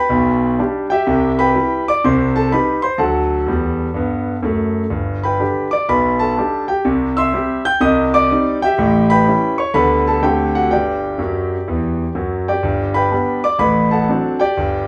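Stride piano jazz with a swinging, playful mood, this short passage is cut from a longer piece and moves in a 4/4 swing. A concert grand piano plays alone for the full 14.9 seconds, ranging from deep bass notes up into the high treble. Its tone is clear and smooth with a vintage character, a deep low end and long sustain, and it sits up front in the mix. The harmony moves through changes such as Cmaj7, Cm, A7 and D7 before settling on G, and a piano fill arrives at 11.2 seconds just before the opening section starts over at 12.6 seconds. A wet, small-room reverb gives the feel of a live performance in a single intimate space.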